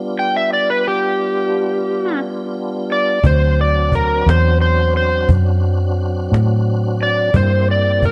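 A tonewheel organ with key click, slow rotary speaker and chorus vibrato holds full, lightly overdriven chords as a warm, overdriven slide guitar takes the melody up front, and at 3.2 seconds a round, foam-muted electric bass and a woody, soft-handed cajon join this swaggering, laid-back slow blues in 12/8 over G7, D7 and C7, with light reverb and a dark production.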